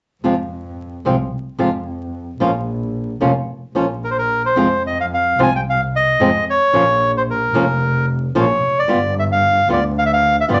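Passionate and tense, this rubato tango excerpt in F minor at 111 BPM opens at 0.2 s with a fingerpicked acoustic flamenco guitar over a dark, woody bowed double bass with vibrato, and at 4.0 s a reedy, vintage, band-limited bandoneon takes the melody, sitting up front beside the guitar as the harmony moves through Fm and Bbm to a G7 at 8.9 s, all within a wet club reverb and a layer of vinyl crackle.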